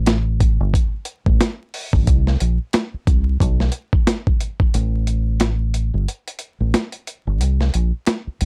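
A dry, gritty hardware recording with transformer saturation and a bed of vinyl crackle frames this short, moody boom-bap hip-hop cut, lifted from a longer piece. At 90 BPM in 4/4 with a swung sixteenth-note feel, it has an unhurried, reflective lean. A deep dub-style fingered electric bass sits up front from the start, dark and round, its direct, amped tone holding the low register between G1 and C2. A dusty soul sampler-style drum kit joins at 0.1 seconds, compressed and overdriven, with a thumpy kick, a medium-tuned snare and hi-hat all pushed close to the listener. From 4.7 seconds the track moves into a break that carries it through to the end at 8.5 seconds, bass and drums still sharing the stage.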